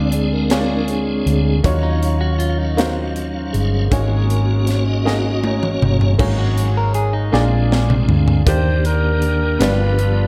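Slow gospel in 6/8 at 53 BPM, soulful and uplifting, this short excerpt drifts in a dreamy mix soaked in moderate plate reverb with a small room ambience. A tonewheel organ carries sustained chords and takes the lead as soloist through the first 8.5 seconds, its piping, scooped tone lightly overdriven with key click, chorus vibrato and a slow rotary speaker. Beneath it, a bright grand piano with a brilliant, worn character and short sustain supplies accompaniment, while a hollow-body short-scale electric bass sits up front, dark, round and punchy. A crisp fusion drum kit, airy and polished with a high-tuned snare and punchy kick, works across crash, hi-hat, toms, kick and snare, adding fills before each new section. A clean, compressed, picked electric guitar adds a second line from 1.8 to 7.5 seconds, and at 8.5 seconds a tight horn section with vibrato and delay enters with the melody over an Ebmaj7 that moves to G7.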